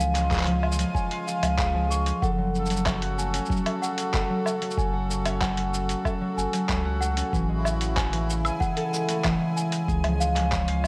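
Intimate and autumnal, this folktronica excerpt moves at 94 BPM in F# minor, with a concert harp playing mellow, ringing fingerpicked arpeggios roughened by vintage 12-bit sampler grit and delay, over reedy, sweet accordion chords with a light tremolo tuning. A bell-like, delicate celesta adds a close-miked, dry second line with its own delay, while a deep, round sine sub bass with tube saturation sits up front. A muffled, compressed lo-fi drum kit of cabasa, handclaps, hi-hat and woodblock is joined at 0.3 s by a thumpy electronic kick, both carrying a small-room character, as the chords move from C# to F#m, Amaj7 and back to C# in light reverb.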